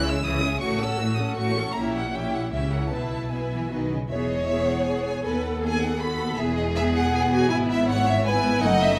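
Up front, a smooth, even violin section carries the melody high in its range, while a second violin section adds an expressive line beneath it, all bowed with vibrato in this spirited, graceful classical-period movement for string orchestra in E major, taken at a quick 159 BPM in 3/4 with a rubato feel. A more distant viola section fills in the accompaniment, a focused, lush cello section and a close double bass section with portamento anchor the bass, and the harmony moves from C#m through a diminished chord and onto B before settling into E at 4.1 seconds. The strings bloom in the resonant reverb of a recital hall, and the passage is cut from a longer piece.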